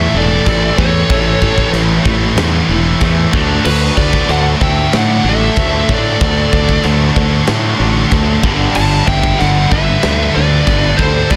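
A dark, delay-tinged high-gain lead guitar carries the melody over a quieter second lead line in this heavy, relentless heavy metal passage at 94 BPM in 4/4, cut from a longer piece, with three bright, picked riffing guitars (one double-tracked) set in the background, a growly fingered electric bass, and a big-room acoustic drum kit with punchy kick, snare, crash and china entering at 0.5 seconds, all moving through A, D and G in a dry, dense, heavily limited modern master.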